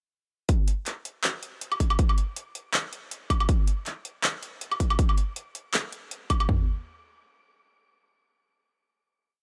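This future bass piece moves at 160 BPM in 4/4 with a half-time feel and a light swing on the sixteenths, giving it a euphoric, playful mood. A big-room dance drum kit carries the low end with a punchy kick and floor tom, set up front and driving a half-time pattern from 0.5 seconds to 6.6 seconds. Layered over it, a pop drum kit adds handclaps, a high woodblock and metallic closed hats that break into rolls, and this kit alone is overdriven. Both electronic kits sound produced and layered, re-recorded in a small room, with little reverb, and the big-room kit sits louder than the pop kit. The drop runs from 0.5 seconds until 6.5 seconds, when the piece arrives at a final hit that closes it out.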